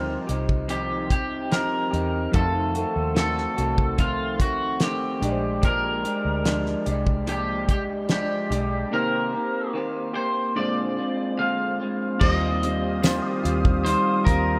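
Laid-back and hazy, this short bedroom-pop passage cut from a longer indie pop piece moves at an easy, straight 4/4 pace over lush jazzy chords, carried by a twangy electric guitar melody on the edge of break-up, bathed in lush chorus and tape echo. Beneath it, a second picked guitar through a small old amp wobbles with warbly pitch drift, very quiet detuned lo-fi synth keys add nostalgic shimmer, a round, foam-muted vintage bass sits underneath, and an up-front cloth-damped drum kit gives a fat snare, tight kick and dark cymbals. Near the end, from 12.6 seconds, a swirling phased analog pad rises in with a brief jingle of tambourine in the background, all wrapped in the light reverb of a rough home demo.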